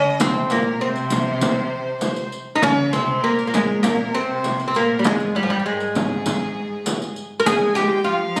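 A fretless oud leads this short Arabic maqam ensemble fragment, its plectrum-plucked double strings sounding woody and deep, placed up front in the mix. Alongside it, a single bowed violin plays a second line with light vibrato and an airy, sul tasto tone that feels intimate and close, while a lush symphonic cello section carries another second line lower down with expressive vibrato and soft attacks. A large frame drum, close and dry, and a riq with dark jingles played by soft hands join at 0.2 seconds, giving the straight 4/4 groove its pulse. The mood is hypnotic and soulful throughout this single section, cut from a longer piece. The sound comes from a phone in the room, with moderate studio reverb and compression.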